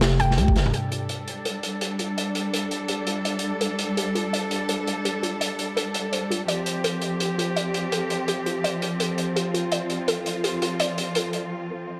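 Half-time drum and bass at 167 BPM with a dark, cinematic mood, this excerpt opens on a warbly, dusty, detuned lo-fi pluck playing chorused, delayed arpeggios, a gritty, saturated breakbeat kit of hi-hat, snare and toms sitting up front, and a brief, buzzy growling 808-style bass, with a knocking electronic kick landing at 0.5 seconds just before a drum fill at 0.6 seconds. From 0.7 seconds a rich, bowed symphonic cello section sustains smooth vibrato chords with sidechain pumping while a filter sweep moves over the pluck, all set in a lush hall reverb until a break at 11.5 seconds.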